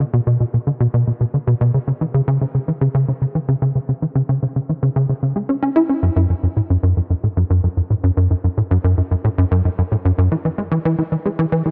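A tight sequencer bass plays alone for the full 11.7 seconds of this fragment cut from a longer ambient work. Its tone is punchy and dark, blending sawtooth, square and triangle waves shaped by a filter pluck, with a fast attack and a decaying tail. Ensemble chorus thickens the sound while delay adds echoes, and the bass sits up front in a light reverb. Ranging from F#2 up to E4 in a straight 4/4 feel, it has a driving quality that feels hypnotic and mysterious.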